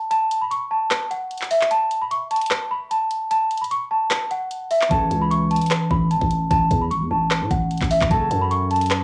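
A bell-like, delicate celesta carries the melody up front in this short trap hip hop piece cut from a longer work, its sweet, hard-hammered tone given a cassette tape character and a mood that feels both triumphant and wistful. An electronic trap kit with a knocking kick, bright hats, handclaps and rim click sits close alongside it in a half-time feel, roughened by vintage 12-bit sampler grit and tape. The opening stretch plays as a break, and the kick drops out between 4.1 and 4.9 seconds. At 4.9 seconds a fingerpicked concert harp enters with ringing, low-pass filtered accompaniment, joined by a growling, buzzy 808-style bass with a fast attack and decaying tail. The harmony settles on A before shifting to F#m, all framed by light reverb and a small, homemade room ambience.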